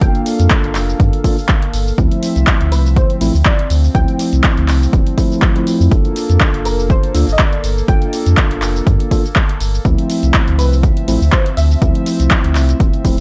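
A swung 122 BPM deep house groove in G minor rides on an overdriven, punchy electronic kick and a dry analog drum machine of handclaps, hi-hat and shaker, while a full, up-front sub bass with octave pumps against the sidechain. Mellow tine electric piano stabs through analog delay and a smooth, warbling pad with 12-bit sampler grit alternate between Gm9 and Dm9. A soft, round pluck melody sits dark in the background under tape echo, giving this gritty, cassette-toned excerpt a deep, warm mood.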